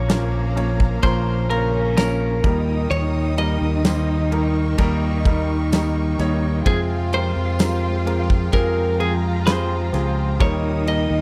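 A straight, unhurried 4/4 pulse carries this heartbroken, longing pop ballad, cut from a longer piece, with a huge arena drum kit up front: punchy kick, a medium-tuned snare and bright ride cymbal ringing in a hall-like space. A fingered electric bass sits close beside it, its amped tone shaped by an envelope filter. A clean, picked electric guitar carries the melody in a compressed voice, touched with spring reverb and slapback echo, while a clear, polished baby grand piano fills in the accompaniment. Behind them, a lush bowed string section holds smooth, even chords with vibrato, and a rich cello section plays a distant second line in the background. A jingly tambourine stays close and dry at the back until 9.7 seconds, and a barely audible electronic impact marks the opening 2.9 seconds. The harmony moves from Bbm to Eb and on to Fmadd9 before returning to Eb, all within a dry, intimate 1970s-style studio sound with a small room reverb.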